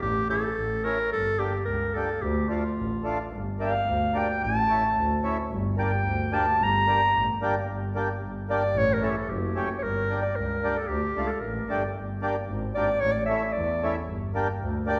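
Klezmer in 2/4 at 111 BPM, festive and soulful, played in G dorian with a raised fourth, gathering speed across the whole 15 seconds of this fragment cut from a longer piece. A clarinet carries the melody up front with a warm, smooth top and classical poise, taking a solo over the first 7.7 seconds before the music moves into a second section. Beneath it a single bowed double bass sounds distant yet present, expressive with vibrato and portamento. A mellow accordion, close-miked and dry, fills out the harmony with a reedy, full tone-chamber richness from 0.3 seconds. Chords circle among A, G minor and D minor, and the whole trio sits in the lingering reverb of a recital hall, with a decay of about 1.7 seconds.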